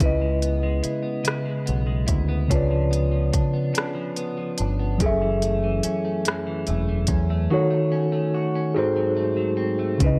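This slow six-eight R&B excerpt opens with electric piano, bass, drums and electric guitar sounding together from the first moment, moving at 48 BPM in dotted quarters with a straight, yearning late-night feel in C# minor. The mellow tine electric piano carries the accompaniment up front, clean and heard through its built-in speakers, while the deep dub picked bass sits equally forward with a dark, round, direct-amped tone in its low register. A produced electronic drum kit of soft kick, smooth hi-hat and rim click adds a tape-warm pulse close to the listener. Lower in the mix, a clean picked electric guitar traces a second line through analog chorus. The harmony passes from C#m7 to C#7b9, then F#m7, D#m7b5 and G#7b9, all set in a light reverb over roughly 10.2 seconds.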